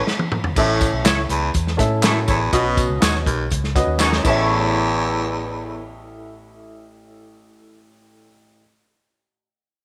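A straight 4/4 groove at 122 BPM drives this danceable, uplifting 1960s-style soul excerpt in A major, opening with a band accent and drum fill from a tight, roomy kit with dark cymbals that drops out at 4.4 seconds, while a woody upright piano and a round, foam-muted fingered electric bass carry on, an edgy, punchy baritone saxophone riffs with vibrato up front until 5.9 seconds, tambourine and handclaps sit in the background, and a clean electric guitar with an envelope filter and ensemble chorus adds stabs, inside a moderate echo-chamber reverb.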